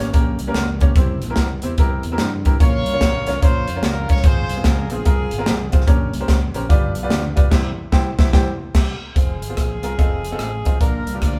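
Uptempo gospel with a fervent, soulful swing, where a crisp, punchy drum kit sits up front over a clear, intimate baby grand piano and a growly fingered electric bass, while a tight horn section carries the melody from 2.6 seconds, drops out, then returns at 9.2 seconds after a band accent in a lightly reverberant room.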